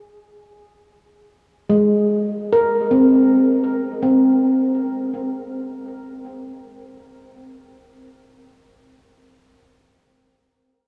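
A ringing nitrided-steel handpan, up front with a vintage, band-limited tone and tape echo, plays alone from 1.7 to 7.1 seconds with sharp finger strokes over an Abadd9 harmony that falls away at 5.6 seconds, floating in free time through a vast, echoing reverb in this reflective, serene ambient piece cut from a longer work.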